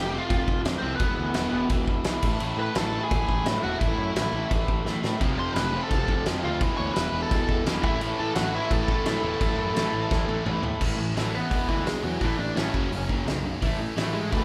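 A band playing live in one room with light reverb drives this energetic, upbeat punk rock piece at 171 BPM in straight 4/4, moving through chords such as F5, E5 and A5. A bluesy, distorted lead guitar carries the melody over a growly fuzz bass and two background riff guitars, one hollow-bodied semi-hollow and one compressed. A roomy, distant drum kit sits up front with a fat snare and punchy kick, playing fills at 4.9 and 10.1 seconds, and a sludgy, double-tracked distorted guitar joins the riff at 5.2 seconds.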